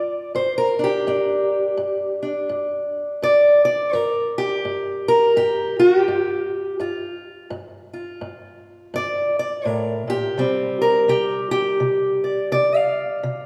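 A loping 4/4 pulse at 84 BPM carries a lazy swing on the eighth notes, giving this acoustic country blues a slow, unhurried gait. A lone fingerpicked steel-string acoustic guitar plays throughout the 13.5 seconds, ranging from G2 up to F5 in G minor. The tone is boxy with a parlour-sized body, sitting up front in the mix. The harmony rests on Gm7 before turning to Csus2 at 10.4 seconds, and the mood is mournful and smoky. A wet, lingering reverb from a church or concert hall surrounds the guitar with a long tail, and the passage is clearly cut from a longer piece.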